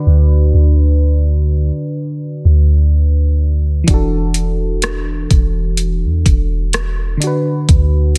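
A dry, close sound frames this brief, tender contemporary R&B excerpt in D major at a slow 63 BPM, with a gentle 16th-note swing and tuning set to A4 = 444 Hz. A mellow FM electric piano carries the chords, soft and round with a warbling chorus, a vintage full body and a faint noise layer, moving from D6 to E9sus4 at 3.9 s and back to D6 at 7.2 s, while a deep, sine-like 808-style bass sits up front with dark, quickly decaying notes. At 3.9 s a smooth electronic drum kit joins with a knocking kick, metallic hi-hats and rim clicks, its tape-tinged sound pushed forward in a romantic, unhurried groove.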